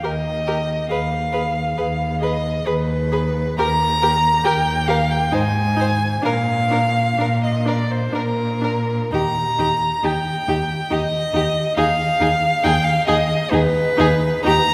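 A string quartet opens together on an Eb chord in this tender classical excerpt, a slow romantic movement in 3/4 at 58-71 BPM with a rubato feel. The first violin sings the melody up front with a rich, smooth vibrato, while the second violin plays an even inner line and the cello anchors a close, bowed bass beside it. Further back, the viola adds soft-attacked accompaniment with expressive portamento, all bathed in a wet church reverb as the harmony moves through Abm/Eb, Ab5 and Bb before settling on Eb at 9.1 seconds.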